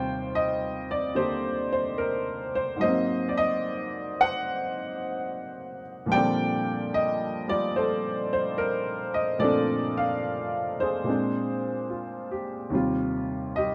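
A woody, slightly detuned upright piano sits up front in a small room with a moderate touch of reverb, giving this short fragment of solo jazz a vintage, smooth character. At 73 BPM in 4/4 with a swung eighth-note feel, the piano spans from Eb2 to G5 in Bb major, moving through rich chords such as Eb69, Ab9 and Bbmaj13 before returning to Eb69 at 12.7 seconds. The mood is playful and warm.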